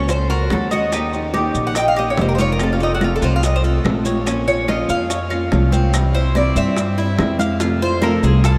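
A straight 4/4 pulse at 144 BPM drives this sultry, danceable Cuban son and guajira excerpt in Bb harmonic minor, anchored by a growly, thumpy pizzicato upright bass up front, with very quiet ringing, high-tuned congas, round, low-tuned bongos, grainy maracas in the background and close claves entering at 0.5 s. A bright, picked tres with double strings takes the melody as a solo across the full 8.6 seconds, while a second, metallic tres plays arpeggios alongside it and a small, fingerpicked nylon-string guitar adds accompaniment. A huge, wet reverb sets the music in a vast, echoing space as the harmony moves from Gb through Eb, F, Bbm and C before returning to F.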